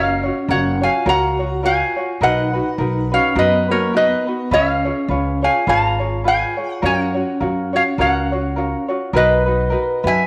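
A nasal, metallic lap resonator guitar carries the fingerpicked slide melody up front from the first moment of this dreamy, sunny Hawaiian cut in F# major at 104 BPM with a swung 4/4 feel, joined throughout by a mellow vibraphone second line with fast motor vibrato, a bright thumb-plucked tenor ukulele accompaniment and a woody, growly pizzicato upright bass, set in a moderate echo chamber reverb as the chords move from F#maj7 through Bmaj7 and C#7, back to F#maj7, and on to Bmaj7 at 9.1 seconds.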